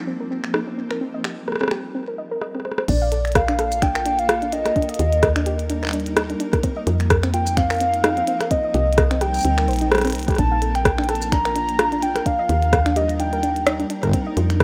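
IDM at 128 BPM in Eb lydian with a swung 16th feel, playful and wistful, cut from a longer piece: a blurred, granular cloud pad with vintage 12-bit grit and sidechain pumping holds sustained chords from F7sus4 through Cm7, Bbmaj7 and Ebmaj7 while a soft, detuned pluck with chorus and digital delay arpeggiates and a glitchy kit of clicky hats, finger snaps, rim clicks, shaker and crash sits up front under a filter sweep until a drum fill at 2.4 seconds, then at 2.9 seconds a soft electronic kick, a woody, dark FM bass and a mellow, warbling lead with vibrato, chorus, delay and cassette-tape nostalgia arrive, all in a rough home-demo mix with light reverb.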